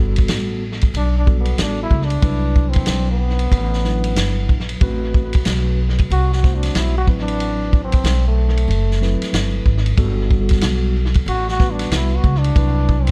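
A swung 4/4 groove at 93 BPM sets a cool, nocturnal jazz-hop mood in this hip hop excerpt, cut from a longer piece. A vintage acoustic drum kit sits up front, with a tight kick, medium-tuned snare, hi-hat and dark ride cymbal, its rolled-off top heard through a small room and touched with tape echo. Pizzicato upright bass, woody with steel strings, sits equally forward beneath a mellow tine electric piano that plays clean chords through its built-in speakers, softened by tape echo. From 1.0 seconds a mellow trombone takes the solo, playing in a jazz style with light vibrato and scooped notes, present in the mix and trailed by tape echo. The harmony moves through lush chords such as Gmaj9, Cmaj9#11, Am69 and D13/A, and the whole mix carries an echo-heavy, small-room character.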